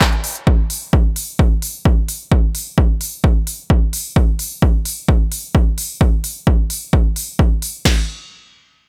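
Euphoric and uplifting, this short cut from a longer EDM track runs at 130 BPM in a straight 4/4 pulse. A big-room dance drum kit carries the crash cymbal, kick drum and snare drum, with a punchy kick and snare sitting up front and playing from the start until 8.0 s. A second layer of the same electronic kit adds handclaps and crisp hats, mixed lower beneath the main hits and stopping at 7.7 s. Both layers have a layered, produced character and were re-recorded in a small room, which gives them a close, present feel. The overall sound is dry, with a brief closing passage arriving at 7.9 s.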